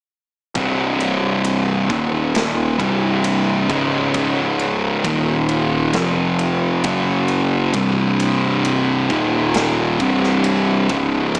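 Sludgy and brooding, this short stoner and doom metal cut in C minor crawls at 67 BPM as a thick, double-tracked fuzz guitar riff sits up front over dark, round, overdriven picked bass and a big acoustic rock kit with a boomy kick, medium-tuned snare and ride cymbal, all playing together from 0.6 to 11.4 seconds through power chords on C, E-flat, D-flat, F and F-sharp, in a small room with a small-speaker sound.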